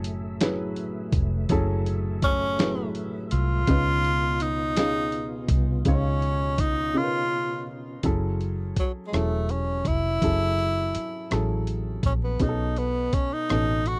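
A slow six-eight R&B groove in F# dorian at 55 BPM opens on a gritty, compressed sampler-style drum kit with a thumpy kick, medium-tuned snare, rim click and hi-hat sitting up front, beside a round, foam-muted fingered electric bass. A dark baby grand piano adds intimate accompaniment with audible action noise, while a mellow tonewheel organ holds sustained chords with percussive attack, chorus vibrato and a slow rotary speaker until 8.0 seconds. At 2.2 seconds a breathy tenor saxophone enters with the melody, its soft attack and scooped notes close-miked and jazz-inflected. After a break at 7.0 seconds, the saxophone takes a solo at 8.0 seconds over harmony moving from F#m9 to B9. The sound is dry and close, like a 1970s studio session, and the late-night, yearning mood carries through this passage cut from a longer piece.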